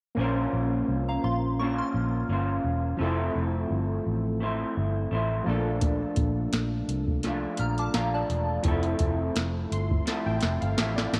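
Indie pop with a bedroom-pop haze, this laid-back, dreamy clip moves at 85 BPM with a gentle swing, drifting through Bbmadd9, Fmaj7 and Bbmaj7 chords. Detuned sawtooth analog keys with chorus and a filter sweep sit beneath a slightly broken-up, lo-fi electric guitar steeped in lush chorus and vibrato, while a dark, foam-muted fingered bass anchors the low end and a pure FM bell line with phaser and slapback echo appears at 1.1 seconds and returns later. A soft vintage rhythm box with a deep kick, crisp snare and metallic hats joins at 5.8 seconds, and near the close the keys and drums each play a fill, set in a lightly reverberant space.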